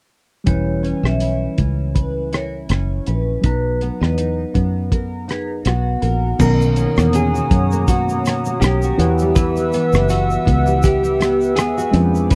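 Dreamy, laid-back indie bedroom pop with a lightly swung feel, built on a muffled, cloth-damped drum kit with dark cymbals and a round, foam-muted fingered bass sitting up front, while a dark, full-bodied fingerpicked acoustic guitar wavers with chorus and pitch drift and a worn, slightly out-of-tune reed electric piano hums in the background through overdrive and cassette tape. A bright, ringing vibraphone carries a second line until 5.5 seconds, then an electric guitar through a small old amp takes the melody at 5.7 seconds, slightly broken-up and lush with chorus. From 6.4 seconds a hollow, flute-like pad and a grainy tube shaker join, all within a dry, close 1970s-style studio sound.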